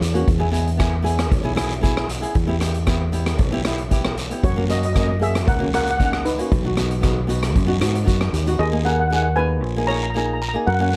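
A straight 4/4 calypso groove drives this festive, sunny fragment, built on a growly, punchy fingered electric bass, a raspy guiro and a dark, up-front street-band drum kit of boomy kick, hi-hat and rim click that stops at 8.6 seconds, while a fingerpicked flamenco guitar with audible finger squeak plays chords beneath a shimmering, metallic steel pan lead that enters at 4.4 seconds, the whole heard in a dry, close mix.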